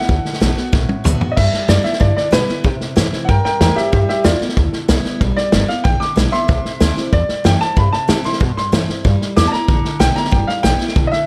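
Rollicking and upbeat, this short rockabilly excerpt moves in a straight four-beat feel from its opening bar. A vintage drum kit with a punchy kick, medium-tuned snare and rolled-off top sits up front in a natural small-room sound, and it plays a fill from 0.7 to 1.4 seconds. From 1.4 seconds, a clear, woody upright piano takes a solo and carries the tune through to the end. Underneath, a picked jumbo steel-string acoustic guitar supplies full-bodied accompaniment, while a pizzicato upright bass with gut strings adds a thumpy, warm low end. Light reverb and studio ambience give the group a lively, close-knit sound.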